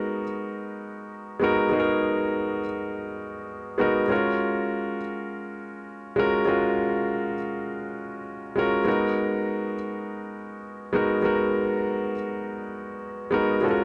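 A solo grand piano opens this short soul excerpt, played alone from start to finish across its 13.8 seconds. The mood is warm and romantic, moving at 101 BPM in 4/4 with a gentle swing on the sixteenths. The piano sits up front with an intimate, natural tone, and the noise of its action is audible beneath the notes. Its part stays in a compact middle register, moving through G#m9, then F#maj9 at 4.1 seconds, and back to G#m9 at 8.9 seconds. A light reverb gives the room a subtle sense of space around the close, personal sound.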